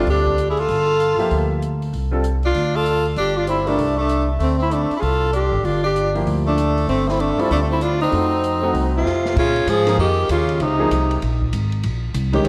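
Modal jazz at a brisk 194 BPM swings with a spiritual, hypnotic pull in this short excerpt, as a warm, subtoned alto saxophone carries the melody up front with a touch of delay over a bright tenor saxophone's vibrato-laden, scooped second line, a clear piano that drops out between 3.8 and 6.1 seconds, a woody pizzicato upright bass, and a dark, boomy drum kit whose fill at 9.0 seconds leads the shift from G9sus4 and F7b9 into Bb dorian on Bbm11, all bathed in a dreamy, lush hall reverb.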